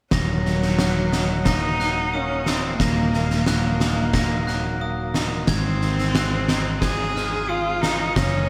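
A dreamy, reverb-soaked hall sound frames this cathartic, cinematic post-rock excerpt at 90 BPM in Eb dorian, with an up-front oversized low-tuned drum kit in a bright stone room giving a punchy kick and fat snare beneath a round, dark picked electric bass. A bright bowed cello carries the focused, vibrato-laden melody through analog delay, while a clean, twangy, compressed electric guitar and a sparkling, bell-like glockenspiel struck with hard plastic mallets ring out arpeggios in the background, each also fed through analog delay. The harmony rests on Ebm before shifting to Ab at 5.5 seconds.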